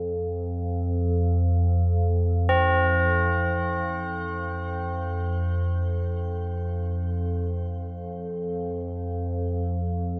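Floating in free time, this haunting, meditative world piece cut from a longer work pairs a glassy, ethereal FM pad holding a slow-blooming drone on F2 with chorus and built-in reverb, while solemn tubular bells, struck with a plastic hammer and ringing bright and metallic between C4 and F4 through shimmer reverb, sit up front in a dreamy mix soaked in plate reverb across its 10.2 seconds.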